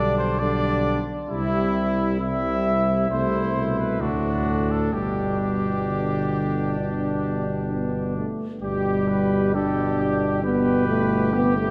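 A slow, straight 4/4 pulse at 66 BPM carries this stately classical brass quintet in G major, a short cut from a longer piece in which a bright trumpet with light vibrato and a soft attack sings the melody over a clear, smooth-topped second trumpet. Beneath them, a mellow French horn and a distant, roomy trombone sitting in the background provide accompaniment, while an up-front bass trombone anchors the bass with gentle vibrato. The harmony moves from G/B through C, Am/C and D to settle on G. A wet church reverb gives the whole a warm, spacious glow, and the opening phrase returns at 8.6 s.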